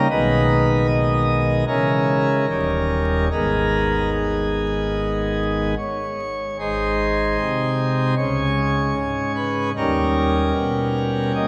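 Classical chorale-style passage for solo pipe organ, grave and solemn, cut from a longer piece, its brilliant, full plenum with mixtures in a romantic voicing sitting up front in a long, wet church reverb under vinyl crackle, moving with rubato through minor-key chorale harmony before shifting to a major chord at 6.6 seconds and ending on a dominant seventh at 9.8 seconds.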